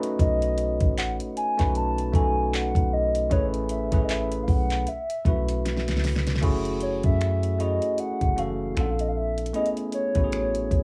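A slow, swung contemporary R&B groove at 77 BPM in 4/4 rides on an electronic drum kit with a knocking kick, fat snare, metallic hi-hats, finger snaps, handclaps and a crash cymbal, all sitting up front with a tape-tinged character. The mood is moody and longing, anchored by a deep, boomy 808-style bass whose sine tone carries a noise layer and a fast attack that decays. A bell-like tine electric piano, bright and clean and heard as if through its built-in speakers, opens with a fill at the very start and carries the chords, moving from B9 through Amaj7 and B7sus4. Above it, a hollow, woody synth lead with a clarinet-like quality sings the melody, soft and sustained with vibrato, chorus, cassette tape coloring and analog delay. A drum fill from 5.6 to 6.4 seconds leads into a new section built on F#m9 before shifting through A#maj9 and Amaj9. The sound is dry and intimate, with small-room ambience and the grain of a home cassette recording, and this fragment is cut from a longer piece.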